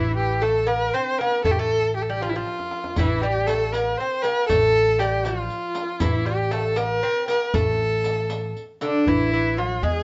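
A bowed kamancheh leads up front with a clear, focused tone, its single voice carrying the melody with vibrato and portamento. This is a soulful, hypnotic passage of Persian modal ensemble music in dastgah shur on A, moving at 79 BPM in dotted quarters through a straight 6/8. Beneath it, a fingerpicked acoustic lute with nylon double strings, some doubled at the octave, adds a delicate second line. A pizzicato upright bass on gut strings supplies a woody, dark, thumpy low end. In the background, a tombak played with hard hands sounds deep and distant, as if in a large room, and plays a fill at 2.5 seconds. A soft-handed riq with bright, vintage-sounding jingles joins at 3.0 seconds, and the whole band plays live together in one room with light reverb.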